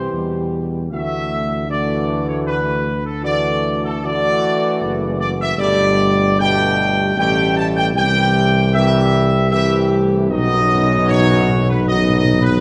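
Classical brass in a triumphant, majestic 3/4 at 77 BPM, this excerpt sets a dark, soft-attacked trumpet section on the melody up front, a punchy solo tuba anchoring the bass, and mellow trombones and warm, lightly vibrato-tinged French horns holding sustained chords in the background, moving through C, Dadd9 and Gadd9 before very quiet hard-mallet timpani on calf heads enter at 10.3 seconds over a closing B chord, all bathed in a wet scoring-stage reverb.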